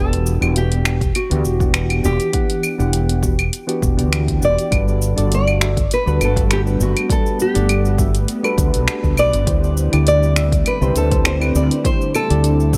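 Sunset chillout with a relaxed, blissful mood and a lightly swung 4/4 groove, where a fingerpicked nylon-string guitar carries the small, delayed melody over round, mellow electric-piano-like synth keys treated with chorus, phaser and delay, drifting through Em9, Gmaj9 and D7sus4. A punchy, up-front fretless electric bass with tube saturation and ensemble chorus anchors the low end, while an overdriven deep house kit of cabasa, claves, finger snaps and hi-hat ticks along, joined at 1.0 s by a deep, overdriven electronic kick. At 6.2 s a shimmering, ethereal ambient pad with an octave-up glow settles in the background, and light reverb softens the whole of this excerpt cut from a longer piece.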